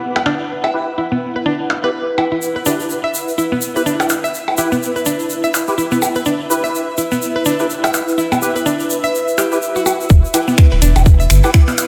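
Minimal techno with a clinical, quirky mood, this excerpt of a longer piece floats a cloudy granular pad and a woody, round mallet-like synth pluck riff over tape-echoed percussion blips and a hollow, organ-like percussive stab under a filter sweep, with a grainy tube shaker arriving at 2.4 seconds, all in a dreamy hall-reverb mix, until the drop at 10.1 seconds brings in a deep, saturated sub bass and a tight, overdriven electronic kick up front, joined at 10.3 seconds by an overdriven garage drum kit of finger snaps and hi-hat.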